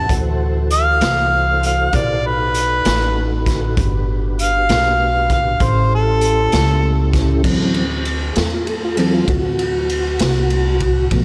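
A mellow harmonica with light vibrato and scooped notes opens this gritty, rollicking slow blues in 12/8, taking a jazz-style solo up front until about 7.1 seconds. A soft, flute-like tonewheel organ holds sustained chords beneath it, its clean tone colored by chorus vibrato and a slow rotary speaker, and then the organ takes its own solo from 7.4 seconds. An upright bass played pizzicato gives a woody, dark low end. A raw garage drum kit, saturated and boomy in the kick with a rolled-off top, pumps in a small room, working crash, ride, hi-hat and snare. The chords move from D7 through B7, Gmaj7 and A7 before returning to D7, and the whole dreamy mix is soaked in a huge ambient reverb, in a passage cut from a longer piece.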